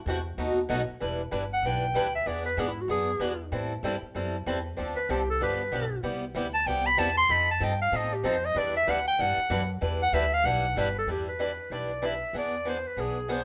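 A warm clarinet carries this brisk, swinging slice of acoustic string swing, entering at 1.5 seconds for a virtuosic jazz solo that runs until 11.1 seconds. Its tone is up front, with a subtone, light vibrato, scooped notes and a smooth top to its sound. Beneath it, a bright, boxy picked acoustic guitar with fresh strings keeps up a swing-style accompaniment, sitting forward in the mix. A woody pizzicato upright bass anchors the low end in the minor-key harmony, which moves from Em7 through Am7, Dm7, G7 and Cmaj7 to F9 before settling back on Em7. A moderate club reverb gives the trio a lively, intimate setting, and a new section begins at 11.1 seconds before this piece of a longer performance cuts off.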